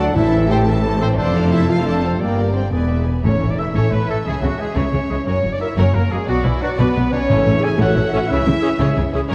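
In a straight 6/8 at 118 BPM, this heroic, soaring passage of adventure film score opens on Am, F, Gm and E7 chords before turning to A major at 3.2 s, with a lush, bowed violin section carrying the melody in the background and a second, distant violin line beneath it. A present, bright oboe, a dark clarinet and a hollow, airy flute section weave second lines over very quiet violas with portamento, while tight horns hold dark sustained chords over very quiet trombones, and a mellow, roomy trumpet adds stabs. Woody cellos and smooth, even double basses anchor the bass, soft-mallet timpani strike round A2 notes at 0.2, 3.2 and 7.3 s, and a wet scoring-stage reverb wraps the excerpt in a dark, warm production.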